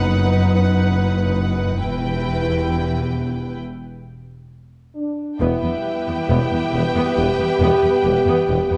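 The mellow French horn section stands out, holding sustained chords over a warm cello section and a clear, close double bass section in this heroic, relentless epic orchestral film cue in E minor at 67 BPM, moving from B/F# to Em. Above them, two lush violin lines with vibrato carry the melody and a second line, while a dark, woody viola section fills in the accompaniment, building up until a break at 3.6 seconds. At 5.4 seconds a background string section with portamento, a very quiet trombone section and a soft-attacked tuba join, all set in a moderate scoring-stage reverb with a dark production.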